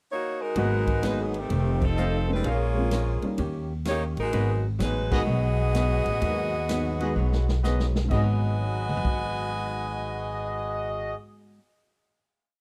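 This is a dry, close recording with a 1970s studio character, and the whole short big band swing piece comes across as brassy and dramatic. An edgy saxophone section opens alone with a brief pickup before the full band enters at 0.6 seconds, then sits up front with a motif-based melody in period phrases, harmonised in four-part block voicing with light vibrato. A mellow trumpet section with a smooth top adds syncopated stabs in close voicings, while a baby grand piano comps with rootless voicings and a dark, compressed, hollow-body archtop guitar strums four to the bar in the background. Up front, a woody pizzicato upright bass plays a two-feel line, and an acoustic drum kit with a boomy kick drives a stick backbeat and ride cymbal pattern, punctuated by band accents. The drums play a fill at 7.2 seconds, and the band then holds a final chord from 8.1 seconds, with the drums playing on until 9.2 seconds.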